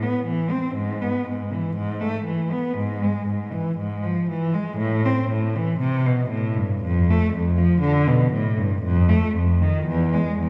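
A solo bowed cello, warm and expressive with vibrato and portamento, carries this grave, flowing baroque-style suite movement at a rubato 59 BPM in 4/4, ranging from E2 to C4 up front in the mix while a wet recital-hall reverb places the listener further back in the room, all within a 10.5-second passage cut from a longer piece.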